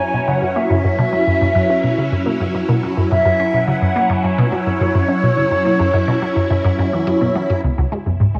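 Ambient, sequencer-driven space music at 106 BPM in 4/4, hypnotic and expansive, cut from a longer piece and recorded at home on cassette with a wet spring reverb, where a squelchy, resonant blip pluck riff with phaser, subtle chorus and tape echo sits up front beside swirling sustained chords from a phased string machine with ensemble chorus, while an airy, distant concert flute with vibrato carries the melody through tape echo and cassette grain until 7.1 seconds, moving from F#7sus4 to C#m at 7.6 seconds, where a round, deep analog bass enters barely audible.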